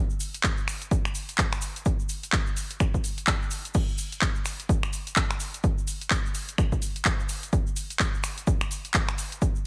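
A grainy, bright egg shaker opens this gritty, aggressive house passage at 0.1 s, miked close yet tucked into the background. A house drum kit follows at 0.2 s, bringing crash cymbal, finger snaps, handclaps and warm hi-hats, all pushed up front with a layered, produced electronic sheen and a tape-like glow in a studio room. An electronic kick drum lands at 0.4 s, punchy and forward in the mix, sharing that same studio air. The groove runs in four with a swung sixteenth-note feel through a single section. A digital ambience surrounds the parts, and the passage is cut from a longer piece.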